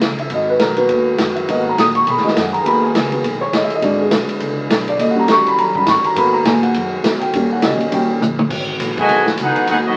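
The sound is that of a very old 78 rpm record, with vinyl crackle wrapped in a wet studio reverb. This is a dramatic, swinging big band jazz fragment in G# minor at 205 BPM, cut from a longer piece, with a swing feel on the eighth notes. A dark, woody upright piano sits up front and takes a solo over chords moving from G#m7 through E7 and D#7#9. A pizzicato upright bass with a thumpy tone holds the low end, and a vintage kit with a punchy kick, heard in a small, natural room, plays a fill at 8.2 seconds. Behind them, a warm trombone section holds sustained chords in the background. At 9.0 seconds a clear, tight trumpet section with light vibrato enters on the melody, joined by a bright, close-miked trombone section on a second line.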